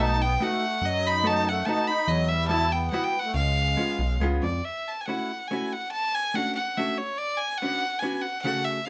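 A clear, nasal violin carries the bittersweet, nostalgic melody up front in this rubato musette waltz at 142 BPM, with a dark, hollow-body electric archtop guitar accompanying throughout, a shimmering, reedy accordion second line and a fat, detuned sawtooth bass playing until about 4.2 and 4.6 seconds, when the music settles into F# minor in a moderate studio room.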